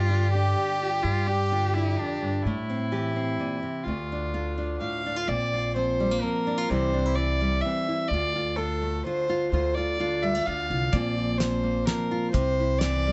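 A reedy, gut-toned fiddle carries this wistful, haunting excerpt of acoustic folk in D minor, moving from a second line into a solo at 5.3 seconds, after a bowed cello with vibrato and portamento sings the opening melody until 2.3 seconds. Bright fingerpicked nylon-string guitar and a woody, dark pizzicato upright bass hold a steady 127 BPM in 3/4, and a cloth-damped, thuddy drum kit with a fat snare and tight kick joins at 10.9 seconds. Moderate studio reverb surrounds the small ensemble.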